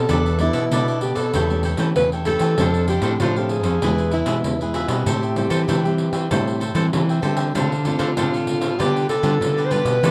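Nostalgic yet lively, this samba and choro excerpt in A minor moves at 97 BPM in a straight 4/4, with a breathy alto saxophone carrying the melody in an intimate, close-miked jazz style full of vibrato, subtone and scooped notes. Around it, a crisp, bright picked cavaquinho and an up-front, full-bodied fingerpicked nylon-string guitar supply the harmony, while a second nylon-string guitar, thumb-plucked in the background, holds down the bass. A jingly pandeiro with hard hands sits distant in a large room from 0.1 seconds, the whole framed by light reverb and a dark production as the chords pass through E7sus4, A7/E and Am7 before a closing turn to Dm7 and G7/D at 7.6 seconds.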